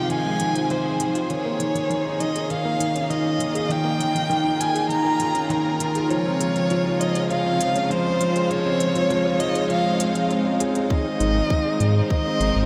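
A straight 4/4 pulse is marked at first only by crisp, tape-tinged electronic hi-hats ticking beneath this melancholic, cinematic piano and strings electronica, cut from a longer piece. A dark concert grand piano carries the riff up front, mellow and intimate, with audible action noise, deep lows and a vintage character thickened by analog chorus and delay. Above it, a single bowed violin sings the melody with vibrato and portamento, expressive and smooth-topped, its lines trailing through delay, while a studio string section holds lush sustained chords in the background with sidechain pumping. The build-up moves through Fm7, Eb7sus4 and Dbmaj7 before the drop lands on Ab at 10.9 seconds, where a tight, produced electronic kick enters up front. A round analog bass follows at 11.2 seconds, blending sawtooth, sine and triangle tones with a fast attack and its own sidechain pumping, and a huge ambient reverb soaks the mix in a dreamy wash.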